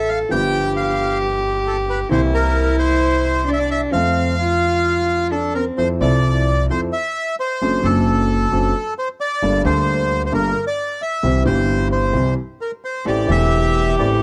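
A reedy, dark bandoneon sings the melody up front from the opening moment. Alongside it from the start are a biting, bowed solo cello on a second line, a clear, vintage grand piano accompaniment and a woody pizzicato upright bass, in a playful, passionate tango in F major at 132 BPM in 4/4 with a rubato feel. The cello steps away at 5.8 seconds and returns at 13.1 seconds, and this short cut from a longer piece has the dry, close sound of a 1970s-style small-room studio recording.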